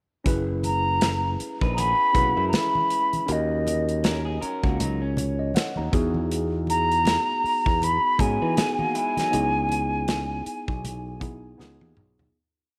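Lush 1970s-style soul with a smooth, cinematic mood, this short piece moves at an easy 79 BPM in 4/4 with a gentle sixteenth-note swing. A hollow, pure concert flute carries the melody up front, playing tongued, motif-based call phrases with vibrato, close-miked and warm. Underneath, a clean tine electric piano pushes rootless chord voicings with short fills, while a bright, growly fingered bass lays down a warm, melodic soul line dotted with muted ghost notes. A polished studio kit with a tight kick and medium-tuned snare sets a smooth mid-tempo groove, and very quiet, damped congas add a slap on two and open tones on four. An electric guitar through a small old amp, slightly broken-up, slips picked fills in sixths between phrases from 1.6 to 9.5 seconds, as the harmony drifts from F#7sus4 through D#m7 and Emaj7 to C#m7 and C#7 before a fade-out that begins at 9.3 seconds and a closing drum fill, all set in a moderate plate reverb.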